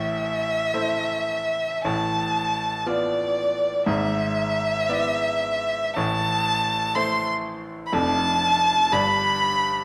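Serene and warm, this brief romantic classical excerpt pairs a solo violin with a grand piano in A minor, moving in a gently rubato 6/8 at roughly 53-62 BPM counted in dotted quarters. The violin carries the melody from D5 to C6 with a rich, smooth, even tone and vibrato, a single bowed player who sits up front yet carries a distant quality. Beneath it, the grand piano supplies accompaniment from the low F1 up to D5, its sound bright, brilliant and polished with a short sustain, present and also placed up front though a little lower in level than the violin. The harmony moves from Am through Bm7b5/A and E7/G# back to Am at 6.0 seconds, then on to Dm/F and G before the 9.8-second cut from a longer piece. A wet scoring-stage reverb surrounds the duo, and a faint mains hum sits beneath the music.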